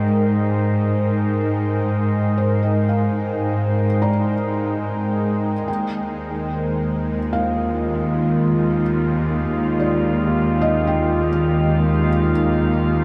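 An evolving, morphing wavetable pad sits up front with sustained chords, its warbling, vintage sine tone shaded by chorus and its own reverb, moving from Abmaj7 to Ebmaj9 at 5.7 seconds in this weightless, luminous ambient passage at 74 BPM in Ab lydian. A rich chamber cello section bows a smooth, even bass with vibrato beneath it, while a soft felt-muted upright piano fades in with tape-echoed arpeggios in the background, its action noise audible, and a tense, nasal, string-like sawtooth drone fades in alongside. The dark production is bathed in huge ambient reverb, and the passage is cut from a longer piece.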